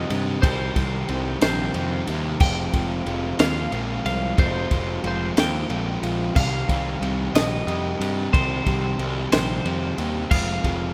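Indie rock in C minor at a slow 61 BPM in 6/8, cool and moody, this cut from a longer piece moves from Cm to Fmadd9 and back, closing on Fm. A clean, twangy, compressed twelve-string electric guitar carries the melody over a crunchy, double-tracked overdriven guitar riff, while an up-front fuzz bass rumbles underneath. A compact, dry cocktail drum kit adds a punchy kick, high-tuned snare and dark crash and ride cymbals, all in a rough home-demo mix with light small-room reverb.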